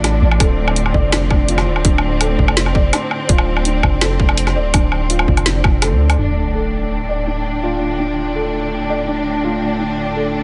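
Lush bowed strings with sidechain pumping, a boxy felt-muted upright piano playing arpeggios through a low-pass filter and tape echo, a deep sine 808-style bass, a drum kit with a woody snare and bright hats, and a grainy, flickering texture set low in the mix open this heavy, spacious half-time drum and bass cut in D minor at 166 BPM, with a hard-clipped electronic kick joining at 0.4 seconds and the kit stopping at 6.2 seconds as an impact and a background sub drop land and a filter sweep moves across the piano.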